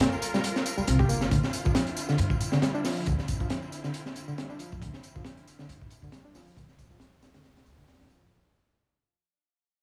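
A crunchy breakbeat drum kit drives this gritty, raw breaks cut at 137 BPM in 4/4, swung at 55% on the sixteenths, with hi-hat, a tight kick and a high-tuned snare sitting up front in a dark, rolled-off small-room sound. A layered, tape-warm electronic tambourine rides quietly beneath the kit. At 0.3 seconds an overdriven reed electric piano enters with a riff, its reedy tone roughened by fast tremolo, a combo amp, vintage 12-bit sampler grit, a low-pass filter and dub echo. A woody pizzicato upright bass on gut strings joins at 0.8 seconds, thumpy and warm. Behind it all, a muted, con sordino studio string section holds lush, veiled chords with soft attack and vibrato, pumping under sidechain compression as the harmony moves from Gm9 to Dm9 at 1.3 seconds. Light small-room ambience surrounds the mix, and the whole clip, cut from a longer piece, sits under a fade-out.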